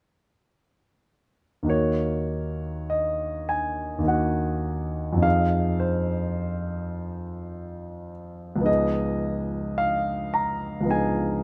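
A dark, hazy production with light reverb places a concert grand piano up front, its tone natural and warm with a deep bass. This is a brief fragment of impressionist classical solo piano, mysterious in mood, moving at a slow 52 BPM in 3/4 with a free, rubato feel in E-flat dorian. The piano plays alone from 1.6 seconds to 11.4 seconds, ranging from Db2 up to Bb5. The harmony drifts from Ebm7 to Fm7 at 5.3 seconds and settles on a Db9, keeping the colour unresolved and dreamlike. Cut from a longer piece, it feels like a single suspended breath of a larger reverie.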